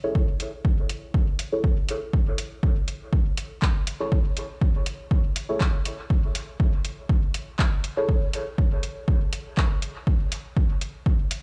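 A steady, lightly swung 4/4 pulse at 121 BPM drives this meditative, hazy dub techno excerpt, built on a punchy, overdriven electronic kick that sits up front from 0.2 seconds alongside a soft vintage rhythm box of handclaps and metallic hi-hats trailing dub echo. Over an Eadd11 harmony, a deep, mellow chord stab in a nasal, dark timbre with a sub octave and filter sweep pumps against the kick, colored by chorus, phaser and dub echo, until it drops out at 8.1 seconds. The sound is dry in itself yet heard as if played on a big sound system in a bare room with large studio reverb.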